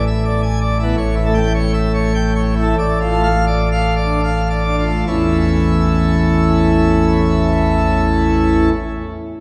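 A solo pipe organ on full plenum, rich in mixtures and with a baroque voicing and audible chiff, carries this short passage cut from a longer classical organ toccata. The mood is brilliant and jubilant, set in A major and 3/4 time with a straight feel, at a tempo ranging from 67 to 109 BPM. The organ spans A1 to G#5, and the music slows from the opening to 5.1 seconds while the harmony moves from E7/A through A7 and Dm/A. At 5.1 seconds a new section arrives on a plain A chord, and the organ sounds until 8.7 seconds. A long, wet church reverb with a 2.9-second decay places the listener further back in the room, so the sound rings on through the space.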